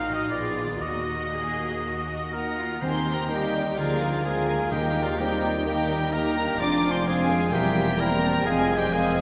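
Classical orchestral excerpt in Eb major at roughly 118-130 BPM, stormy and restless, cut from a longer piece and bathed in a wet church reverb, its harmony moving from Bb7b9 and Ebm to Eb and later Fm. Bright, intense violins carry the melody over a clear oboe second line, a lush second violin section in the background, smooth violas, ringing fingerpicked harp arpeggios, a very quiet, close cello section and a distant double bass section. At 2.3 s an airy flute and a warm, soft-attacked French horn section holding sustained chords join, followed at 2.8 s by a clarinet, a mellow bassoon and hard-mallet timpani that sound until 5.4 s.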